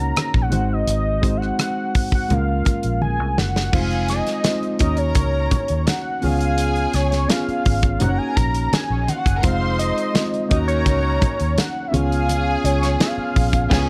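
A small-room recording of lush 1970s-style soul at 84 BPM, bittersweet and silky and cut from a longer piece, where a fat, detuned sawtooth analog lead with chorus carries the melody over a barky, lightly overdriven reed electric piano, a dark, foam-muted fingered electric bass, a punchy modern studio drum kit and very quiet, damped congas, before a drum fill at 3.0 seconds leads into distant, vibrato-rich bowed strings entering at 3.7 seconds and a smooth jazz-style horn section adds background stabs from 9.4 seconds ahead of a closing band accent.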